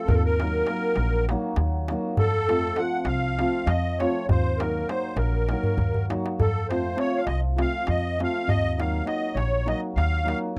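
A reedy musette accordion and a ringing hammered dulcimer open this fiery, bittersweet Balkan wedding-band excerpt, both placed up front, with the accordion's musette tuning lending a shimmering, slightly boxy small-room colour to the melody. A woody, growly pizzicato upright bass on steel strings and a crisp, deep metal-shelled darbuka join almost at once, driving a straight 7/8 groove. The harmony swings back and forth between Eb minor and F throughout this single section, the dulcimer's warm accompaniment sitting beneath the accordion line. A darbuka fill from 5.6 to 6.4 seconds breaks up the pattern before the band carries on to the cut. The sound is dry and close, with the feel of a 1970s studio recording.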